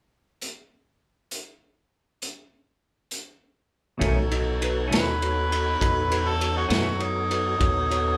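Soulful and swaggering, this slow 12/8 blues in B mixolydian at 67 BPM opens with a gritty, saturated garage drum kit playing alone before, at 4.0 seconds, a woody, thumpy pizzicato upright bass, a clean picked electric guitar with harmonic tremolo, a tine electric piano and a fat, lightly overdriven tonewheel organ with key click and slow rotary speaker settle onto a B9 chord, and at 4.9 seconds an up-front, overdriven harmonica enters with a jazz-style solo full of light vibrato, tongue slaps and scooped notes, the band captured live in one room with moderate large studio reverb.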